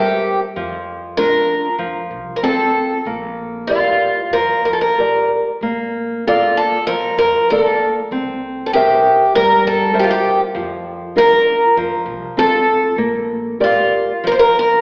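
A nostalgic, tender fado-style ballad opens with two acoustic guitars together: a picked twelve-string carries the melody with a shimmering, octave-doubled archtop tone, while a small-sounding nylon-string guitar fingerpicks the accompaniment beneath it, both up front with audible finger squeak. At 0.6 seconds a pizzicato upright bass on gut strings joins in the background, woody and thumpy, and it drops out at 13.8 seconds while the guitars carry on to the end. The rubato feel lets the phrasing breathe over a gentle harmony that moves through chords such as C7, Bb/F, F and Bb6, and the same passage is heard twice. The whole is heard from further back in a reverberant recital hall, with a narrow, AM radio coloring that lends a faded, old-time quality. This fragment is cut from a longer piece.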